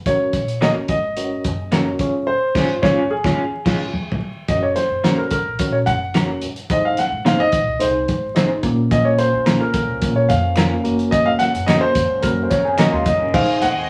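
An intimate, up-front grand piano melody opens this uplifting, uptempo 1960s-style soul excerpt at 108 BPM, over reedy electric piano chords with fast tremolo, woody pizzicato upright bass and a muffled, thuddy cloth-damped drum kit with a fat snare and dark cymbals. Slightly broken-up guitar stabs with tremolo join, and a compressed guitar riff with phaser sits in the background. A lightly overdriven percussive tonewheel organ enters at 8.9 seconds, followed shortly by very quiet finger snaps, and a lush bowed violin section arrives at 13.3 seconds, the band playing live in one small room with wet reverb and vinyl crackle.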